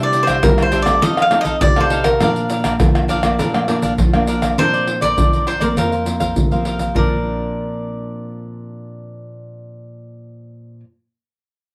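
A straight 4/4 groove of egg shaker, pandeiro, tamborim and deep surdo, struck with hard hands and sounding vintage and band-limited up front, drives this lively, joyful samba and choro fragment until the percussion drops out at 7.1 seconds, while a crisp, picked lead cavaquinho carries the melody with plate reverb over a second picked cavaquinho and a full-bodied, fingerpicked nylon-string guitar with fresh strings and audible finger squeak, all in a moderate studio room.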